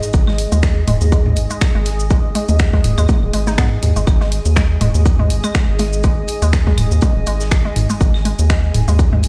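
An overdriven, punchy electronic kick sits up front in this quirky, hypnotic minimal techno excerpt at 122 BPM with a light 16th-note swing, alongside a rubbery, bouncy square bass that pumps against it, a hollow, warbling square pluck riff with chorus and digital delay, tape-toned electronic claves and toms, a dry analog drum machine of snaps, hi-hat and shaker, a very quiet big rock kit of hi-hat, shaker and snare, and a cloudy, evolving granular pad that also pumps, all heard as if played on a big sound system in a bare stone room.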